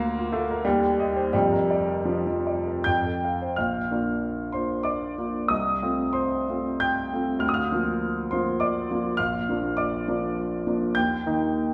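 Romantic classical character piece for solo grand piano in 3/4 with flexible rubato, this short excerpt carries a hopeful, warm mood as the clear, present piano spans from deep bass to bright treble, moving into a new section at 3.6 seconds and settling on an Eb chord at 11.0 seconds, all set in the wet reverb of a recital hall heard from further back in the room.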